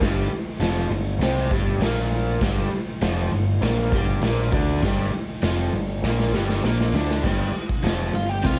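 This home recording on cassette has a lightly reverberant, lo-fi sound, with the rhythm guitar and drums carrying tape coloring. It is a swaggering, raw garage rock cut from a longer piece, moving at 100 BPM in a straight 4/4 and opening on a G5 chord. A bright, overdriven electric guitar plays the double-tracked, compressed riff up front. A growling picked bass with its own overdrive sits beside it, and a gritty, saturated drum kit hits crash, kick and snare in a pumping stone room. A drum fill runs from 6.0 to 7.2 seconds and leads into a short solo section. There, a dark octave-fuzz lead guitar enters at 8.2 seconds for a brief distorted line just before the cut.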